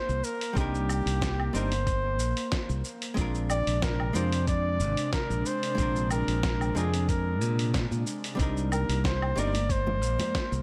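A relaxed 4/4 groove with a light sixteenth-note swing carries this wistful sunset chillout excerpt, cut from a longer piece. A dusty, sampler-style kit of gritty snare, hi-hat, cabasa and woodblock sits under a soft electronic kick, while a bright, growly fingered electric bass plays up front. A warm, close-miked flugelhorn takes the jazz-style solo melody with vibrato and digital delay. Beneath it, a dark, clean archtop guitar picks accompaniment from 0.5 to 9.6 seconds, and an airy, breathy pad with chorus holds mellow chords in the background as the harmony moves from Cm9 to Bb9 and back. Ringing congas played with soft hands slip in near the close at 9.5 seconds, and light digital reverb lends the whole a gentle sense of space.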